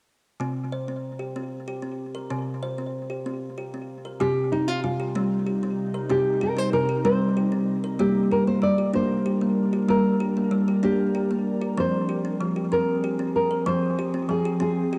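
Swaying in a slow, straight 6/8, this meditative world piece feels hypnotic and gentle, cut from a longer work. A woody, ringing kalimba opens alone at 0.4 s with arpeggios, its hollow-box pluck sitting up front and colored by cassette tape grain and analog delay. At 4.2 s a full-bodied, thumb-plucked nylon-string guitar enters with a deep classical melody, bathed in shimmer reverb, as the harmony moves from C minor through G minor to F minor. From 5.0 s an ethereal, detuned pad with a slow attack and long release settles in the background, its sustained chords softened by chorus, its own reverb and tape. The whole has the intimate feel of a home cassette recording in a small room, wrapped in a wet spring reverb.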